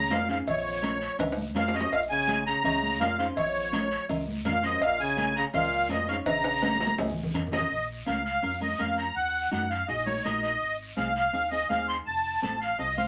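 A reedy, shimmering musette accordion leads up front over a clear trombone second line with light vibrato and a dark, round fingered electric bass, while clean picked electric guitar, bright high-tuned congas struck with hard hands, ringing close cowbell and timbales, and a raspy guiro drive this fiery, passionate cumbia at 166 BPM in Bb minor; drum fills punctuate the opening passage before the trombone stops at 7.0 seconds and the cowbell and timbales at 7.6 seconds, and the chords move from Bbm through Ebm and Ab to F in a club-like room reverb on this cut from a longer piece.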